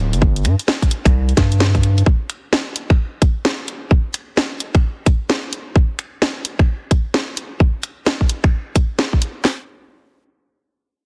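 A skippy two-step garage groove at 130 BPM in 4/4 drives this short cut from a longer UK garage piece, its 16th notes swung at 63% for a lurching, moody bounce. Two up-front electronic drum kits carry the beat: one layers a tight kick, handclaps and a cracking snare from 0.2 seconds, while the other adds finger snaps, bright hi-hats and a second snare from 0.1 seconds, both tightly produced and layered. A rubbery square-wave bass with a hollow, dark tone and a fast, filtered pluck bounces between D1 and G2, sitting forward in the mix before it drops out at 2.0 seconds. The sound is dry, with little reverb, and pressed flat by heavy radio-style multiband compression that leaves audible lossy artefacts. At 9.4 seconds the piece moves briefly into a new section, with the drums carrying the groove to about 9.6 seconds.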